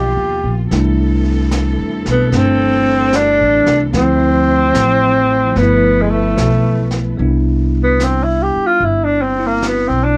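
A breathy tenor saxophone opens this intimate, late-night jazz ballad alongside a bell-like tine electric piano, a woody upright bass played pizzicato, and a bowed cello section set in the background. The saxophone sits up front with a mellow subtone, soft attacks, scooped notes and vibrato, its whispered tone sounding distant and roomy, while the electric piano supplies clean, bright accompaniment. A jazz brush kit enters at 0.7 seconds on brushed snare and hi-hat, with a natural studio-room sound beneath the swung 4/4 feel. The smooth, even cello chords drop out at 7.2 seconds, where the saxophone moves into a solo over Cmaj9, after harmony that passes through G7alt, C6, Dm9 and G13. The whole fragment, cut from a longer piece, carries light reverb and the warbling pitch drift of worn old cassette tape.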